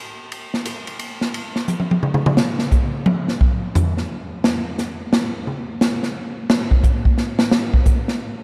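Soaked in a dreamy cathedral-like reverb with a long tail, this hypnotic, cool jazz fragment cut from a longer piece swings in 3/4 at 175 BPM with a lone acoustic big-band drum kit sitting up front, its airy, polished sound built from hi-hat, ride cymbal, toms, a medium-tuned snare and a punchy kick, as a drum fill at 1.7 seconds launches a drum solo that runs from 2.4 seconds to the close.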